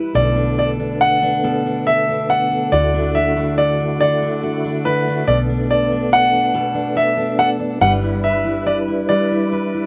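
A melancholic, aching pop fragment in 6/8, cut from a longer piece and moving through Bm7, Dadd9 and G6 over about ten seconds. A bright concert grand piano carries the melody up front, its brilliant, smooth tone sitting high in the mix. Beneath it, a full-bodied dreadnought steel-string acoustic guitar is fingerpicked as accompaniment. A tonewheel organ holds sustained chords with a lightly overdriven edge, chorus vibrato, audible key click and a slow rotary speaker. A vintage muted fingered electric bass adds a dark, round, foam-muted low end, and the whole sounds close and dry, as if played outdoors with little reverb.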